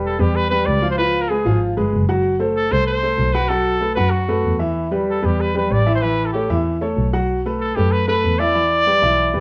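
A punchy, clear trumpet carries the scooped, vintage-toned melody up front in this fiery, danceable salsa fragment in E minor at 190 BPM, backed by an intimate upright piano with audible action noise and long sustain and a dark, woody bowed double bass with vibrato, all set in a moderate studio reverb and colored by the warbling pitch drift of worn old cassette tape.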